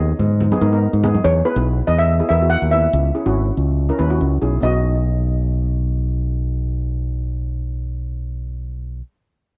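Calypso at 142 BPM in B major, bouncy and festive, in a short clip from a longer home cassette recording with light reverb, where an up-front double-seconds steel pan played with medium rubber sticks comps with a boxy, tape-tinged shimmer over a bright, direct fingered electric bass, ringing hard-hand congas appear only from 0.2 to 1.2 s, and at 1.2 s a second metallic steel pan takes the melody with analog delay as the chords move through G#m, E5 and C#m before settling on B.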